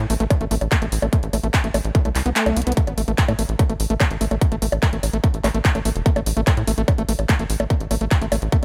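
Psychedelic trance in a straight four-beat pulse, this short cut from a longer piece feels intense and hypnotic. A tight, punchy sequencer bass drives from the very start, its nasal sawtooth-and-square tone shaped by a plucked filter with a fast attack and quick decay, sitting up front. An overdriven techno drum kit of bongos, handclaps and hi-hat runs throughout, joined at 0.3 seconds by a distorted, layered electronic kick that sits up front in the mix. A squelchy, screaming acid riff enters at 0.1 seconds, its resonant sawtooth filter sweep pushed through distortion, chorus, delay and sidechain pumping. The kick drops out briefly around 2.4 seconds while a drum fill lands at 2.6 seconds, and the whole mix stays dry with little reverb.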